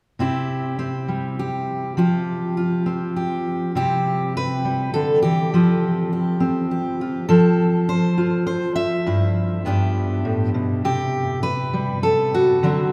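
A fingerpicked steel-string acoustic guitar opens at 0.2 s and carries this short folk piece entirely on its own, moving at 101 BPM in a straight 3/4 in C major, tuned to A4 = 442 Hz. The mood is hopeful and nostalgic as the harmony rocks between C and Fsus2, then drifts through a stretch that sets aside any clear chord before settling on Em/G, G and finally a bare C5. The dreadnought body gives the guitar a warm tone, with the bright ring of fresh strings and audible finger squeak keeping it intimate and close. The guitar sits up front, yet it is bathed in a long cathedral reverb from a church or concert hall that lets each note bloom and hang in the air. The passage ends at 12.9 s, clearly cut from a longer piece.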